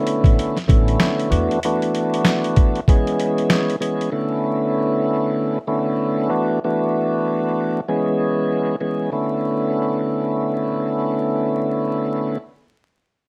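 A dark, vinyl-crackled production with moderate reverb frames this reflective yet tough boom-bap hip-hop cut at 96 BPM in B dorian, where a gritty, compressed, pitched-down sampler kit with a thumpy kick, handclaps and hi-hat swings up front until 4.1 seconds, a woody pizzicato upright bass appears only briefly up to 1.5 seconds, and a full, lightly overdriven tonewheel organ with key click and slow rotary speaker carries the Bm11, E9sus4 and C#m7 changes through a tape-hazed, filtered tone to 12.4 seconds.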